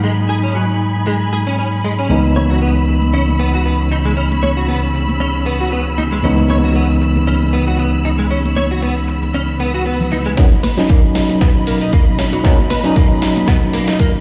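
An overdriven tine electric piano sits up front in this groovy, cosmic nu-disco clip, its barky, gritty tone shaken by a fast tremolo, pumped by sidechain and shaded by a low-pass filter as it carries the accompaniment. At 116 BPM in 4/4 with a light sixteenth-note swing in C# dorian, it moves over G#m7 and C#m7 chords beside a lush, dark symphonic string section holding bowed, vibrato-rich chords that also pump with the sidechain. A clean, direct-recorded electric guitar picks a riff through ensemble chorus, dub echo, a low-pass filter and vintage 12-bit sampler grit. A dusty, compressed sampler-style kit supplies cabasa, hi-hat and a medium-tuned snare, with congas joining softly in the background at 2.2 s. A background electronic swell enters at 9.5 s, and at 10.4 s a punchy, layered electronic kick drum lands up front as the harmony shifts to Bmaj7, launching a build-up with a drum fill and filter sweeps on the guitar and electric piano. 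The mix sits in a 1.4-second echo chamber reverb and sounds as if played through a big sound system in a bare stone room, with its top end dulled.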